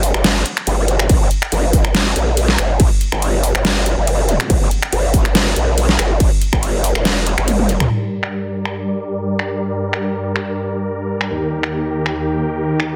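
Heavy and aggressive, this heavy wobble dubstep drop, cut from a longer piece, runs at 141 BPM in a half-time 4/4 feel in G minor. It opens on a growling, saturated wobble bass with chorus and overdrive over a layered dubstep kit of deep snare, metallic filtered hats, crash, finger snaps and toms, while a distorted, tape-warm electronic kick joins at 1.1 seconds and a brief electronic zap sits in the background. After a drum fill, the bass stops at 7.9 seconds and huge, lush, detuned supersaw chords take over through a filter sweep with sidechain pumping, moving from Gm to Eb in a dense, heavily limited mix with light reverb.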